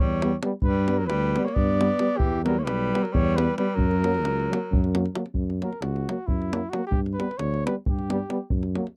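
A mellow cornet leads this restless, virtuosic Balkan brass band fragment, played up front with light vibrato in a classical style, and it takes a solo from 5.3 seconds. The tune moves in a brisk 7/8 at 267 BPM counted in eighths, with a straight feel in F# phrygian dominant, and the harmony passes through Em, G and F#. A bright alto saxophone with smooth-topped vibrato carries a second line beneath the lead until 5.1 seconds. The tuba sits prominently on the bass, while a clear euphonium with a soft attack and a French horn set in the background fill in the accompaniment. A tight, acoustic davul drives the rhythm from close range. The whole band is captured as a dry, close 1970s-style studio recording with light reverb, and the clip is cut from a longer piece.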